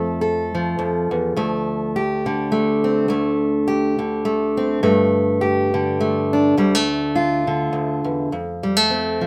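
A fingerpicked steel-string acoustic guitar plays alone, up front and auditorium-toned, in a short folk fragment cut from a longer piece, moving in a lightly swung 3/4 at 104 BPM in D minor and tuned slightly below standard pitch. Its intimate, haunting figures span D2 to A4 over F, D5, Gsus2 and Dm before returning to F at 8.3 seconds. A light reverb surrounds the single guitar for its 9.3 seconds.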